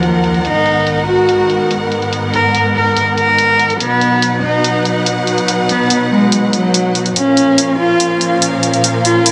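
A single bowed cello carries the melody in this heavy, menacing half-time wobble dubstep excerpt, its warm, expressive line full of vibrato and portamento and roughened by vintage 12-bit sampler grit and delay. Behind it, a rich studio string ensemble holds sustained bowed chords moving through Abm7, B and Bbm, while a layered electronic hi-hat ticks through a low-pass filter. Both the cello and strings sit distant yet up front in a moderate hall reverb with a 2.0 s decay, tuned to A4 = 435 Hz.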